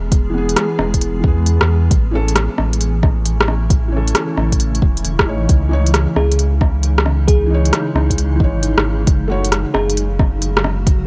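A bell-like FM electric piano with chorus and dub echo sparkles in at 6.2 s over a rainy, ghostly future garage fragment at 134 BPM in C# minor, where a felt-muted upright piano with audible action noise and 12-bit sampler grit, a cloudy granular pad, and a round sine sub bass all pump against a soft, tape-warm kick and a crisp-hatted kit with rim clicks, swung on the 16ths, beneath a dry, up-front mix dusted with vinyl crackle.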